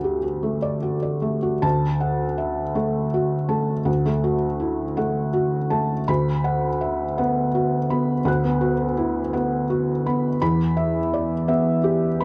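Peaceful and hopeful, this brief neoclassical minimalist excerpt features a solo felt-muted upright piano, soft, mellow and intimate and placed up front, drifting in D major at 55 BPM in a rubato 6/8 with uneven beats, spanning D2 to F#6 as the harmony moves from D to Bm/D at 6.1 seconds and Em at 10.4 seconds within a dark production touched by light reverb.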